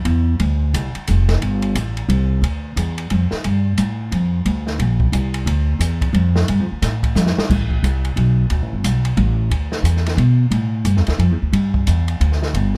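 Dry and closely recorded, this short cut from a longer modal jazz piece puts a woody, up-front upright bass, plucked on steel strings, ahead of an acoustic drum kit heard in a small room, with dark ride and crash cymbals, hi-hat, a medium-tuned snare and a boomy kick. At a brisk 178 BPM in a swung 3/4, the mood is cool and searching, sitting in G dorian until a drum fill at 7.2 seconds leads into A minor at 7.5 seconds. The bass holds the low register throughout, with the drums set back beneath it.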